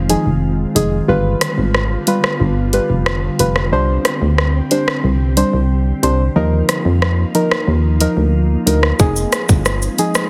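A straight 4/4 dancehall groove at 91 BPM in C minor sets a bouncy, sultry mood in this break, cut from a longer piece. A tight-kicked electronic island pop drum kit with hi-hat, rim click and shaker, re-recorded in a large room, plays alongside a punchy, round FM bass. Up front sits a deep, dark chord stab with chorus and a filter sweep, over a glassy, ethereal FM pad with ensemble chorus, built-in reverb and sidechain pumping. The chords move from Fm7 through G7, Csus2 and Ebsus2, and the mix carries light reverb and a heavily compressed radio sound.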